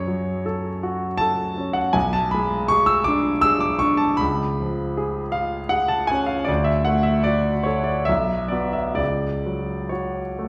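A clear, intimate grand piano sings through this wistful, melancholic romantic nocturne in F# minor, moving in a rubato 3/4 between 63 and 83 BPM over chords such as F#m, C#7 and D, its long sustain and audible action noise carried in a wet recital-hall reverb heard from further back in the room, in a passage cut from a longer piece.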